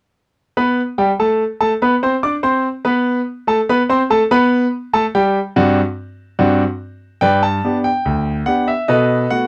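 Jaunty and cheerful, this short ragtime piano piece is cut from a longer work and moves at 72 BPM in 2/4 with a straight feel in G major. A single concert grand carries everything as a solo, playing from 0.6 to 9.5 seconds across a span from D2 to D6. Its tone is clear and smooth with a deep bass and a vintage character, placed up front in the sound. The opening passage starts unaccompanied by harmony before settling onto a D7 chord at 3.9 seconds, and a new section begins at 7.2 seconds on G, closing on a B5 chord. The dry, close studio sound has a 1970s flavor, touched by light reverb.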